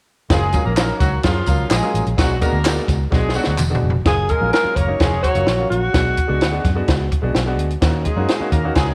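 Joyful and danceable, this fragment of uptempo 1960s-style soul rides on a punchy, high-tuned cocktail drum kit and a dark, foam-muted electric bass, with a tight, octave-doubled horn section playing a second line and an intimate grand piano with audible action noise filling the harmony, tambourine and group handclaps brightening the groove until 3.7 seconds, and a subtoned alto saxophone with scooped notes and tape echo carrying the melody from 4.1 to 7.1 seconds in a small, lightly reverberant room.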